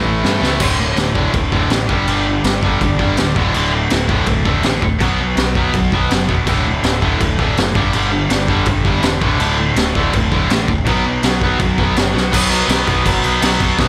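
This energetic, rebellious punk rock cut, taken from a longer piece, charges ahead in a straight four-four with a raw garage drum kit, two tight distorted guitars and a fuzz-driven electric bass. The guitars are bright, picked and double-tracked: one is up front and the other sits in the background, and both hammer out a riff that cycles through D5, G5 and B5 chords. Beneath them, the picked electric bass growls with overdrive and fuzz, its direct-and-amped tone giving the low end a bright bite. The acoustic drums come in at 0.2 seconds, sounding up front and saturated in a small room, with a high-tuned snare, a boomy kick, crash cymbals and a gritty, rolled-off top. A drum fill at 12.1 seconds pushes the band into a new section that carries the excerpt to its close. The mix is dry and loud, keeping every hit and chord close and in the listener's face.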